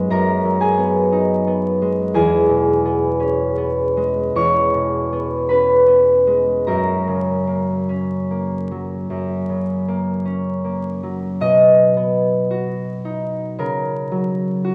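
A fingerpicked concert harp plays alone and up front, its ringing strings spanning E2 to C#6 in this peaceful, dreamy classical piece cut from a longer work. The rubato 4/4 playing drifts through chords such as G#m7/F#, C#m7/E and F#, shifting into a new section at 11.4 seconds that settles on B before closing on F#/C#. A wet recital hall reverb surrounds the harp's warm tone, and vinyl crackle runs through the recording.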